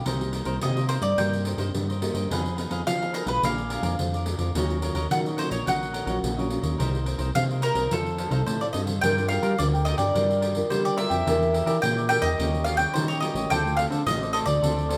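Cavaquinho, nylon-string guitar and a fat analog bass open this lively, sunny cut from a longer samba and choro piece, with a jingly pandeiro arriving at 0.1 s, played with soft hands and sounding distant, as if across a large room. At 0.6 s a round, up-front mandolin takes the melody, its picked double strings ringing high over the band at a straight 107 BPM in 4/4. Beneath it, the crisp cavaquinho and the full-bodied, fingerpicked guitar keep accompaniment, the guitar sitting in the background with a deep classical tone and the odd finger squeak. The thick, detuned bass stands out front, blending sawtooth, square and triangle tones with ring modulation and a filter sweep, giving it a mellow, sustained body with a fast attack. The harmony moves through Cm7, Fm7b5, Bb7 and Ebm9 before settling into G minor at 9.0 s, where Gm7, Em7b5, Eb9 and Dm7 follow. The whole band plays live together in one room, wrapped in a moderate stone-room reverb.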